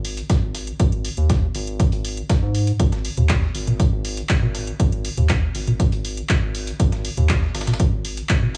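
A punchy, dry electronic kick drives this hypnotic, trippy acid house cut at 120 BPM from 0.3 s, set against a round, deep analog bass with sidechain pumping, a booming analog drum machine of handclaps, metallic hats and toms, and a gritty, compressed sampler-style kit of hi-hat, snare and tambourine, all in a small digital room.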